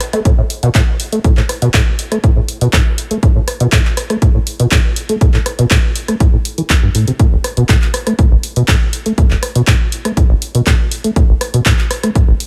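Gritty and raw, this acid house excerpt runs at 121 BPM in a straight 4/4, built on a deep, rubbery sawtooth acid bass riff spanning A1 to A3, its resonant filter sweeping across the whole passage while overdrive and a lush chorus thicken its dark, fast-attack, decaying tone. Up front, an electronic analog kick drum punches alongside a punchy analog drum machine of handclaps, hi-hat and rim click, both re-recorded in a small room. The sound stays dry and close, with little reverb.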